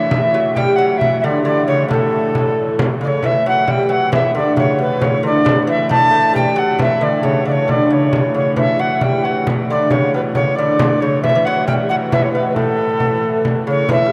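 Festive and ancient in mood, this medieval dance in A mixolydian moves at 90 BPM in a straight 6/8, tuned slightly high with A4 at 444 Hz, and is cut from a longer piece. A mellow alto recorder carries the melody up front with an airy, chiffy tone and expressive vibrato, while a fingerpicked lute with gut double strings adds a delicate second line, a reedy, nasal hurdy-gurdy sustains a drone beneath, and a small, bright frame drum joins at 0.1 seconds. The whole ensemble sits in a vast, echoing cathedral space whose long, wet reverb lends the dance a hallowed glow, with a new section arriving at 3.2 seconds.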